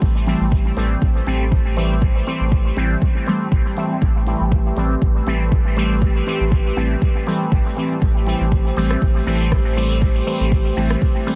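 Cavernous and meditative, this dub techno excerpt moves at 120 BPM in 4/4 with a light 16th-note swing, resting on a single A minor seventh chord throughout. A deep, up-front electronic kick and a clean, smooth sine sub bass on A1 anchor the groove, the bass pumping with sidechain, while a deep house kit adds smooth hi-hats and a rim click from 0.3 seconds, its snare softly clipped. The focus is a juicy, bright resonant polysynth playing stabs between E3 and C4, detuned square and sawtooth tones given filter sweeps, chorus, phaser, sidechain pumping and a trailing dub echo. Beneath it, a moody, wave-folded analog pad holds sustained chords from A3 to C5 with a slow attack, long release, subtle chorus and its own pumping. From 1.2 seconds a very quiet, breathy wind-like noise texture hovers on G4 with built-in reverb, and the whole sits in a digital ambience with a dense, heavily limited modern master and a layer of vinyl crackle.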